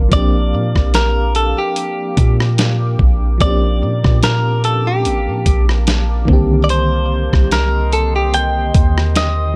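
A warbling, vintage FM electric piano with tremolo and phaser opens this dreamy, romantic contemporary R&B excerpt at 73 BPM in Bb major, together with a moody, detuned ambient pad with chorus and reverb and a boomy, up-front 808-style bass, before a bright, clean direct-recorded electric guitar carries the melody through delay and a gritty, compressed sampler-style drum kit with thumpy kick, hi-hat, rim click and snare enters at 0.1 s, the harmony moving from Bb6 to Cm7 at 6.3 s in a dry mix.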